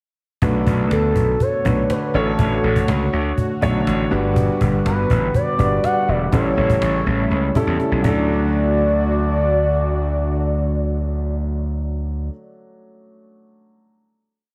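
This complete 1980s-style pop piece in D major opens at 0.4 s, when a baby grand piano, a brassy analog pad, a gritty slap bass and a cajon all come in together at 122 BPM in a straight 4/4, setting a nostalgic, uplifting mood. The open piano plays push chord rhythms in drop-2 voicings with slapback echo, while the sawtooth pad sits in the background with soft-attack, detuned chords, a filter swell, chorus and tremolo. The overdriven, punchy slap bass is up front with a syncopated pop-funk line, and the snappy acoustic cajon drives a big backbeat. At 0.9 s an expressive portamento lead enters with a warbling, wave-folded vintage tone, carrying a motif-based melody in sentence-like phrases colored by vibrato, chorus, delay and slapback echo. The verse moves through Bm7, Dmaj7/A, Gmaj7 and A7, and a drum fill leads into a final hit on D at 8.3 s, all set in a lush hall reverb that gives a big arena sound.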